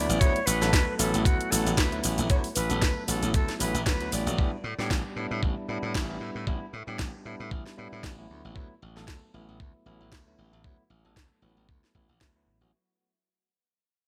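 A gritty, thumpy electronic kick drives this sunny, feel-good nu-disco excerpt at 115 BPM in 4/4, with a lightly swung sixteenth-note feel. It sits up front beside an overdriven house kit of cracking snare, bright hats and shaker. A punchy, glassy slap bass holds down the low end, while a bell-like tine electric piano plays the accompaniment with sidechain pumping and digital delay, moving through D6, A9sus4 and back to D6. An airy silver concert flute with vibrato and a soft attack carries the melody through a digital delay, stopping at 4.4 s while the piano, bass and drums continue. The sound is a bright 1980s-style digital production with light reverb, and the whole cut is fading out from its start to 12.7 s.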